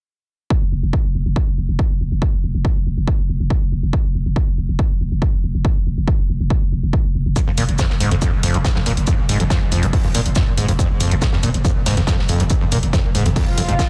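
A heavy, up-front electronic kick and a growling, buzzy 808-style bass pumping through tube saturation open this hypnotic, industrial peak-time techno cut in F minor at 140 BPM, joined at 7.4 seconds by a screaming, squelchy sawtooth acid line with distortion, lush chorus and tape echo, a tape-warm electronic hi-hat and a tight metal drum kit of hi-hat, shaker and snare in the background, before an electronic swell arrives at 13.5 seconds, all set in a dreamy cathedral reverb.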